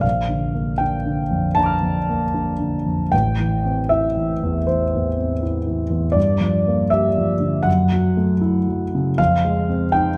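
Hazy and luminous, this short excerpt of impressionist solo piano drifts in a loose rubato over a sequence of seventh chords, moving from Bbmaj7 through Am7, Gm7 and Gbm7 to Fm7 by 9.2 seconds. A concert grand carries everything alone, spanning A1 to F6, its deep bass and intimate, up-front presence captured by close, detailed microphones that reveal audible action noise. A moderate recital-hall reverb lends the natural tone a gentle sense of space.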